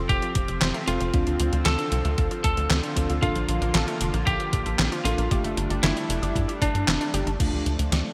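Synthwave at 115 BPM in D minor, this nostalgic, cinematic passage cut from a longer piece moves through F, Dm7, Bbmaj7 and Gsus2 before landing on Dm at 7.4 seconds. Up front, a tight, punchy sequencer bass with sidechain pumping drives beneath a thumpy, tape-warm electronic kick, while a detuned 8-bit drum machine supplies crash, handclaps, hi-hat and a medium-tuned snare drenched in gated reverb. In the background sit a smooth, airy supersaw holding sustained chords, a round, nasal analog pluck spinning arpeggios through chorus and delay, and a dark FM electric piano adding stabs with vintage 12-bit sampler grit. A lightly driven, slightly broken-up lead guitar carries the melody with digital delay, joined by a pure, gentle synth bell on a second line treated with phaser and chorus. Shimmer reverb halos the upper parts, the whole mix sits in a lush hall with bright 1980s-style digital sheen, and the kick drops out between 6.9 and 7.4 seconds.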